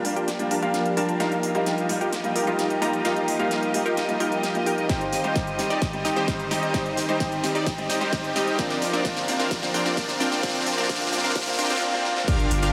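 A bright, brilliant grand piano sits in the background alongside sul tasto chamber strings, a punchy detuned supersaw riff and a crisp big-room drum kit with a huge snare, all building through a filtered, euphoric festival progressive house climb at 130 BPM over Gm7, Ebadd9, Cm and Bbadd9, with a punchy electronic kick arriving at 4.9 seconds, a very quiet riser joining at 6.0 seconds, an impact hitting at 12.3 seconds, and deep saturated sub bass landing at 12.5 seconds in a dreamy mix soaked in reverb.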